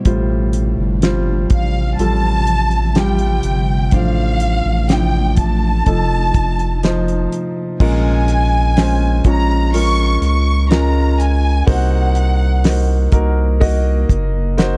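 A straight 4/4 pulse at 62 BPM from a dry, up-front 70s drum kit with a fat snare and tight kick anchors this longing, melancholic pop ballad, as a deep, saturated sub bass underpins a polished grand piano carrying the chords beneath a lush, expressive studio violin section with vibrato from 1.5 s, while an ethereal pad with ensemble chorus and built-in reverb hovers in the background until it stops at 7.8 s, where the music settles into Bb minor, all in a dark, warm production cut from a longer piece.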